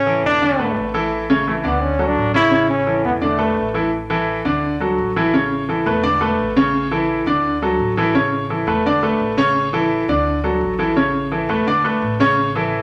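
Wet, large studio reverb with a 1.1-second tail surrounds this festive, danceable salsa passage, cut from a longer piece and moving at a brisk 171 BPM in straight 4/4 in A major. A bright, punchy trombone sits up front and close-miked, playing a short pop-style solo melody with vibrato before it drops out at 3.7 seconds. The grand piano carries the accompaniment throughout, its clear, polished tone intimate and present, with long sustain and audible action noise. Beneath it, a woody, thumpy upright bass played pizzicato on gut strings supplies a dark low end, sitting well back in the mix. The harmony cycles through E7sus4, A and D chords, with a Dmaj7 colouring the opening phrase before the second section begins at 3.9 seconds.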